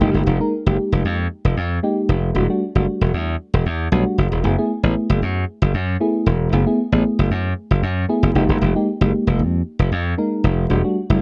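Slick and danceable, this short cut from a longer early-eighties boogie funk track moves in a straight 4/4 feel. Both parts play throughout its full 11.2 seconds, with a glassy slap bass sitting up front, bright, punchy and direct, down in the low register. Beside it, a mellow FM electric piano carries the accompaniment in a soft, round voice with a fast attack that decays, a noise layer, and chorus and phaser coloring its tone. The harmony drifts through minor eleventh chords, Fm11, Em11 and F#m11, before circling back to Fm11 and Em11. The production is dark and dry with little reverb, and the tuning sits slightly low at A4 = 438 Hz.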